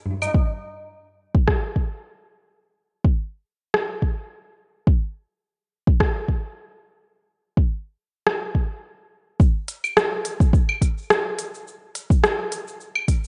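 Downtempo in a meditative, mystical mood at 106 BPM, this short cut from a longer piece rides a lightly swung 16th-note feel carried entirely by drums. An organic electronic kit of cabasa, claves, crisp hi-hat and rim click, low-pass filtered and re-recorded in a large room, sits up front alongside a deep, layered electronic kick, with the arrangement shifting into a new section at 9.4 seconds. The whole recording is bathed in a moderate echo-chamber reverb and a worn, warbling cassette character whose pitch drifts and whose top end is dulled.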